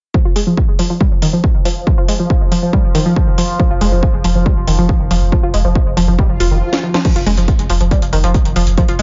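A driving, dark and hypnotic peak-time techno cut at 139 BPM opens at 0.1 s with an up-front, heavy, tape-toned electronic kick and a bright, detuned analog pluck riff running through a filter sweep, chorus, analog delay and sidechain pumping. A techno drum kit with a cracking snare, metallic hats and crash cymbal soon joins, and a deep, moody ambient pad drones on F3 with a slow attack, reverb and its own pumping. A thick, saturated sub bass on F1 arrives at 3.7 s, and after an electronic swell in the background and a drum fill, the echo-heavy mix moves into a new section at 7.0 s before the cut ends.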